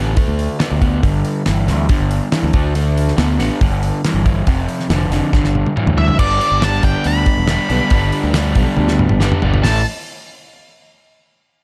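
A crunchy, double-tracked overdriven guitar riff opens this swaggering, driving classic rock excerpt at 140 BPM in a straight 4/4, joined from the start by a growling fingered electric bass with a bright, overdriven edge. The damped 70s drum kit comes in at 0.2 seconds, dry and up front with a fat snare, tight kick, hi-hat, toms and crash cymbal, and it rolls through fills just before the section changes. The riff moves through power-chord shapes on D, G and F, settling on G when the second section begins at 6.2 seconds. At 6.0 seconds a dark, fuzzy octave-fuzz lead guitar enters high above, its distorted tone trailed by a slapback echo. A studio reverb gives the whole band a shared space, and the passage ends by landing on an A chord at 9.6 seconds.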